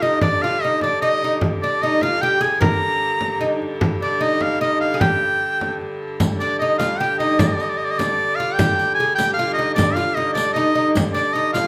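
An edgy shawm with vibrato leads this driving, mysterious medieval dance, its folk-style melody sitting up front at 151 BPM in 3/4 and G phrygian. Beneath it, a bright, woody fretless oud plucked with a plectrum carries a second line, a clear, biting hurdy-gurdy holds an earthy drone, and a close, dry frame drum keeps the pulse, joined at 6.2 s by the jingles of a riq. The band plays live in one room, set in a wet, large studio reverb, in a passage cut from a longer piece.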